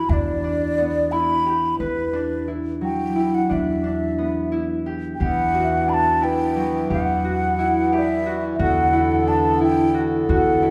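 Contemporary instrumental chamber music in 5/8, moving at 177 BPM in eighths with a straight feel, sits in E minor with an urgent yet pensive mood. A breathy wooden flute carries the melody up front, its hollow, mellow tone marked by vibrato and a crisp attack, while a fingerpicked concert harp rings out arpeggios close beside it. Underneath, a pizzicato upright bass sounds a low E with a woody, thumpy presence. At 5.2 seconds a hand-pumped harmonium enters with dark, reedy sustained chords that breathe smoothly, and at 5.6 seconds a delicate, bell-like celesta adds sweet texture in the background until 8.9 seconds. The harmony rests on Em7 before shifting to Bm7/E, and a wet recital hall reverb lends the music a spacious glow in this short cut from a longer piece.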